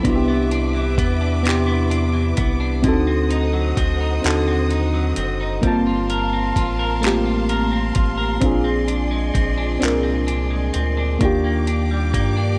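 A dry sound frames this short cut from a longer slow R&B piece in G minor, moving in a straight 6/8 at 43 BPM with a yearning, sultry mood. A dusty, sampler-style soul drum kit sets the pulse with a thumpy kick, gritty compressed handclaps and hi-hat, while a rubbery square-wave bass with a hollow, bouncy filter pluck sits up front from 0.1 seconds. A mellow FM electric piano carries the accompaniment with a soft, round, full-bodied tone, colored by chorus and phaser. A clean, picked electric guitar adds a second line with a touch of spring reverb, and a bright, lush studio string section holds sustained bowed chords with intense vibrato high above. The harmony glides through Cmaj9, D7b9, Gm11 and Bb9 before landing on Ebmaj7 at 11.2 seconds.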